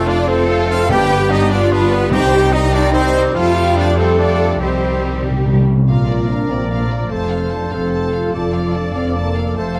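Swashbuckling and determined, this cinematic passage in 6/8 at 98 BPM and C dorian carries a lush, bowed violin melody over expressive violas, dark woody cellos and rich, up-front double basses, while a hollow, airy flute, a cor anglais and very quiet second violins add secondary lines, mellow distant French horns and roomy trombones hold sustained chords, a ringing harp plays arpeggios, tight trumpets punch out stabs, round soft-mallet timpani enter at 0.9 s with a fill from 4.6 s, and a clear, present clarinet joins at 5.9 s, set in a moderate concert hall reverb.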